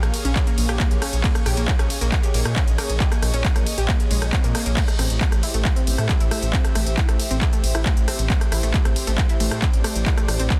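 Dark and relentless, this excerpt of driving peak-time techno sets a punchy analog kick, entering at 0.4 seconds, under a layered techno kit of crash, ride, smooth hats, handclaps and rim clicks, with the hats and cymbals pumping against the sidechain. A thick, menacing detuned saw bass and a lush, full-bodied unison pluck riff, overdriven and trailed by digital delay, both breathe with the same pumping, while a soft, breathy pad with chorus hovers above as the harmony shifts from Bbm to Am at 4.8 seconds. The sound is dry and dense, with a heavily limited modern master.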